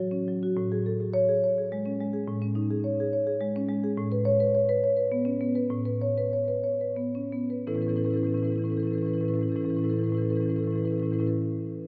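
Playful and flowing, this contemporary classical excerpt for solo marimba moves with a rubato lilt in three, its woody, up-front rosewood bars struck with medium mallets and bathed in a wet church reverb, as the pace slows between 3.1 and 7.7 seconds before a new section begins.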